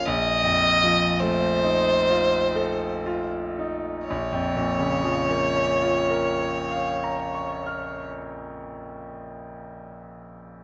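Elegiac and melancholic, this brief fragment of a romantic classical duo in Bb minor moves in a slow, rubato 3/4 at roughly 37-55 BPM, slowing through its opening seconds over an F7 chord above a Bb bass before settling onto Bb minor at 4.1 seconds. Up front, a single bowed violin sings a focused, clear melody with vibrato in a narrow, high range, and falls silent at 8.1 seconds. The bright concert grand piano accompanies with brilliant tone, deep bass and long sustain, ringing on alone until 10.6 seconds in a moderate stage reverb.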